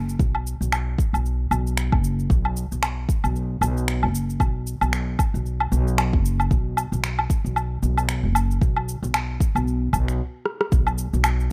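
A deep, tape-warm electronic kick drum sits up front in this short organic downtempo cut, its sound re-recorded in a small room and running until 10.8 seconds. The mood is mystical and hypnotic, moving at 114 BPM in 4/4 with a 58% swing on the sixteenths. Beneath it, a woody pizzicato upright bass on steel strings holds the low end between F#1 and B1, colored by tube saturation and a sidechain pumping effect. A layered electronic kit of cabasa, woodblock, finger snaps and rim click sits close in the mix, adding produced texture. The groove halts briefly from 10.2 to 10.7 seconds, with a drum fill at 10.5 seconds, all set in digital ambience with the character of a rough home demo mix.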